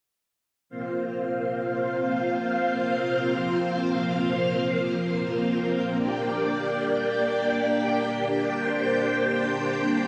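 A vintage full-ensemble string machine enters at 0.7 s up front with soft-attack sustained sawtooth chords and a sub-octave weight, colored by phaser and ensemble chorus, drifting from Fsus4 through Bbsus2/F to Gm in a cinematic, nostalgic synthwave fragment bathed in a lush, long hall reverb.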